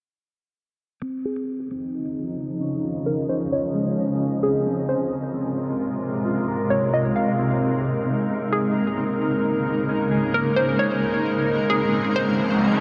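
Hip hop at 132 BPM in a half-time 4/4 feel, this hazy, spacious excerpt opens with a dark, clean electric guitar playing fingered arpeggios at 1.0 seconds, joined by a hollow, bouncy square pluck melody and a cloudy, evolving granular pad holding sustained chords through Dbmaj9, Ab69 and Bbm11, all under a long filter sweep and soaked in huge ambient reverb until an electronic riser enters at 12.3 seconds.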